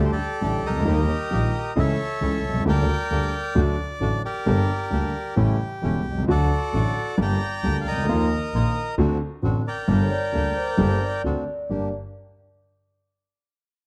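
A dark, bowed double bass with vibrato, a concert grand piano with deep bass and short sustain, and a close-miked, reedy bandoneon carrying the melody open this tense, sultry tango in G minor, taken at 133 BPM in 4/4 with a rubato feel and tuned to A4 = 435 Hz. A second bandoneon adds background stabs beneath the dry, full lead, while a mellow vibraphone played with soft mallets and the motor off rings in with a metallic second line at 10.0 seconds. The production is dark and warm with light reverb, and this short cut from a longer piece closes by resolving from D7 to Gm.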